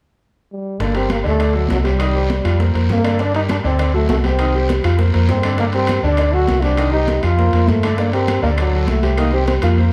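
Heard from further back in a large studio with moderate reverb, this fiery, passionate salsa excerpt in G minor races at 200 BPM as a punchy solo trombone with light vibrato carries the melody up front from 0.5 seconds, over brilliant grand piano chords with long sustain, a dark, round fingered electric bass, quiet high-tuned congas and tight bongos, woody claves, and raspy guiro and ringing metal-shell timbales in the background, with a drum fill at 9.6 seconds.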